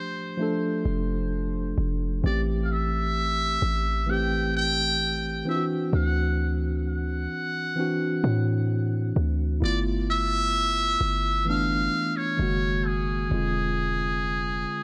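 A muted trumpet and a mellow tine electric piano open this short contemporary R&B excerpt together, setting a longing, sensual mood at a slow 65 BPM in A minor. The trumpet carries the melody as a jazz-style solo, its metal mute giving a buzzy, breathy, thin tone with scooped notes, while a tape echo colours its distant, roomy sound. Beneath it, the electric piano plays clean, direct accompaniment that sits up front in the mix. A deep, boomy 808-style bass enters at 0.9 seconds, its fast attack decaying into a sine-like low end with a noise layer. The harmony moves through rich extended chords, from F6/9 and Am7 through D9, G13 and F#6/9 before closing on a tense E7b9b13 at 13.3 seconds, all wrapped in light reverb and studio ambience.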